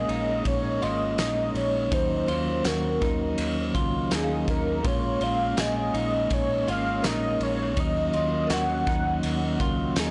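A loose indie drum kit comes in at 0.1 seconds with a straight, unhurried 4/4 pulse, its boomy kick, fat snare, dark cymbals and tambourine sitting up front in a pumping studio room. This short dream pop passage, cut from a longer piece, feels melancholic and hazy as it drifts between Bbm7 and Ebm7 chords. A velvety synth lead carries the melody with detuned sawtooth unison, vibrato, chorus and digital delay, while a mellow tonewheel organ holds soft, flute-like chords through a fast rotary speaker. A clean, compressed semi-hollow electric guitar picks arpeggios with subtle chorus and delay, and a foam-muted fingered bass adds round, punchy low notes. A very quiet FM synth chime warbles and rings in the background with inharmonic, decaying tones. Light reverb surrounds the mix, but the overall recording is blown-out and overdriven, with its top end dulled.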